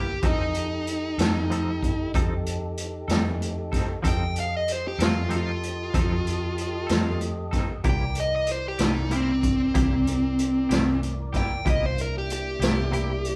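Rollicking yet laid-back, this slow blues excerpt rolls along in 12/8 at 63 BPM, moving from F7 to C7 at 7.8 seconds, with a dark, smooth, overdriven lead guitar carrying the melody up front. Beneath it, a clean, compressed semi-hollow electric guitar comps with tremolo, while a tonewheel organ holds clear sustained chords through a slow rotary speaker with audible key click. A round, punchy, foam-muted fingered bass and a gritty, boomy garage drum kit of kick, medium-tuned snare and hi-hat, entering at 0.2 seconds, anchor the band, which plays together in one room with light reverb.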